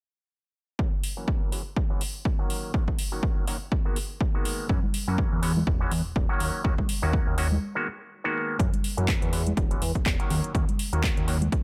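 A nasal, auto-wah clav with overdrive, phaser, sampler grit and pumping enters at 0.8 s with a punchy, up-front electronic kick, joined by overdriven handclaps and metallic hi-hats in a joyful, feel-good filtered disco house groove at 123 BPM with a light 16th-note swing, cycling through F#7, E69, D#m7 and G#m9 under a long filter sweep. At 4.7 s a fat, detuned analog bass with sawtooth and square-wave tones arrives, alongside ringing tube shaker and congas played with soft hands in the background. After a brief break, a new section begins at 8.6 s, all kept dry as part of a longer piece.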